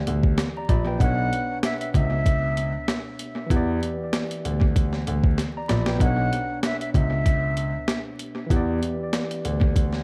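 A gritty, compressed boom-bap drum kit sits up front with a thumpy kick and a medium-tuned snare, re-recorded in a small room and touched with analog delay, with a drum fill at 5.4 seconds, while a dark, mellow concert grand piano carries the deep bass line, its action noise audible. A worn, slightly out-of-tune tine electric piano plays filtered, delayed chords moving between Em7 and Bmadd9 through built-in speakers, and a breathy, close-miked concert flute with a soft attack enters at 1.0 second for a brief straight-toned melody that ends at 8.0 seconds. The dark, tough hip-hop excerpt swings lightly and sits in an echo-heavy mix laced with vinyl crackle.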